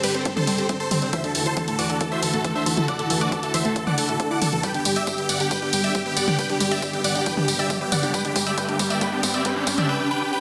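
Drenched in a wet digital room reverb and a dense, heavily limited master, this soaring, euphoric uplifting trance build-up sets a huge, bright, detuned supersaw lead with phaser and delay up front over a dark, bowed studio string section, a lush sawtooth pluck arpeggio under a filter sweep, the hi-hat, tambourine and toms of a punchy analog drum machine pumping to the sidechain with a fill from 4.6 seconds, a background electronic kick, and a riser that enters at 6.9 seconds.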